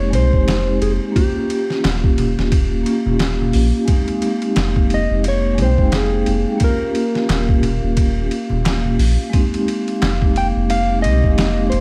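A swung, unhurried 4/4 groove anchors this brooding, melancholic trip hop fragment, cut from a longer piece. The sampler-style drum kit sits up front, compressed, pitched down and gritty with overdrive, a thumpy kick, a medium-tuned snare, hi-hat and ride cymbal in a small room, while a crisp metal-shell darbuka played with soft hands lingers distant in the background. A deep, round dub sub bass holds the low end, and a clean, fingered electric guitar carries the melody through tape echo. Close-miked vibraphone with soft mallets adds ringing, metallic accompaniment with motor vibrato, tremolo and echo, as a warbling, detuned, nostalgic pad with chorus and its own reverb sustains chords behind it. The harmony rocks between Fm9 and Eb9, and the dark, dry production carries a layer of vinyl crackle.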